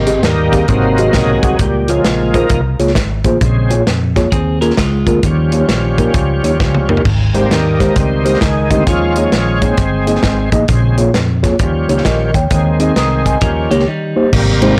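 A blown-out, overdriven recording with light reverb carries this uplifting, soulful uptempo gospel excerpt with a swung feel, where a shouting, lightly overdriven tonewheel organ with key click and slow rotary speaker takes the solo up front over a mellow tine electric piano, a dark, round fingered electric bass and a punchy studio drum kit that drops a fill at 6.6 seconds, while a twangy, clean electric guitar slips in briefly at 4.3 and 13.4 seconds.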